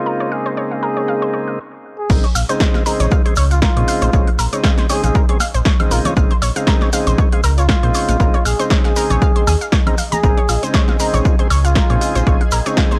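Moody and smooth, this deep house excerpt at 118 BPM in Bb minor opens on a veiled, bucket-muted trumpet melody over reedy tonewheel organ stabs with key click, slow rotary sway, overdrive and sampler grit, alongside a nasal, detuned analog pluck arpeggio and a silky, very quiet string pad. After a brief break, the drop lands at 2.1 seconds with a punchy, overdriven electronic kick and analog drum machine playing crash, hi-hat, snare and woodblock, a deep sine sub bass with octave pumping up front, a grainy tube shaker, and high-tuned congas entering at 2.8 seconds. A mellow, dark ambient pad joins at 5.5 seconds, and the dry, gritty hardware sound carries transformer saturation and cassette tape character.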